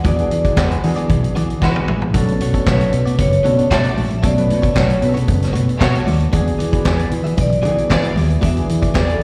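A ringing, metallic vibraphone carries the melody with slapback echo in this sultry, driving disco excerpt at 114 BPM. A punchy, amped fingered bass and a gritty, saturated vintage kit with handclaps and a tight kick sit up front, and the kit plays a fill at 1.6 seconds. Very quiet, bright congas sit close, while a clean, scooped electric guitar and a grand piano sit in the background, and a lush, distant violin section enters at 0.6 seconds with a bowed, vibrato-rich second line. The harmony moves between E9 and Bm9, all heard as a live gig through a venue's PA with recital-hall reverb.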